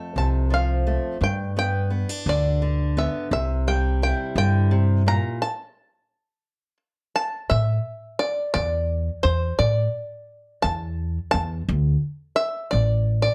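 A twangy, fingerpicked bluegrass banjo carries the wistful, yearning melody of this indie folk fragment in 6/8, up front beside a woody pizzicato upright bass, while a bright fingerpicked steel-string acoustic guitar accompanies only until 5.4 s, all set in a dark production with light reverb and small-room ambience.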